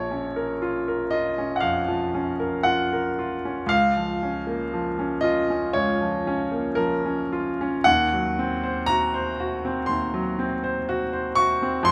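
Flowing in a rubato 4/4, this wistful, yearning romantic nocturne excerpt for solo piano sets a clear, natural grand piano up front, ranging from deep bass to high treble over a brooding minor harmony that darkens into a diminished chord near 7.9 seconds, captured by close, detailed microphones in light reverb.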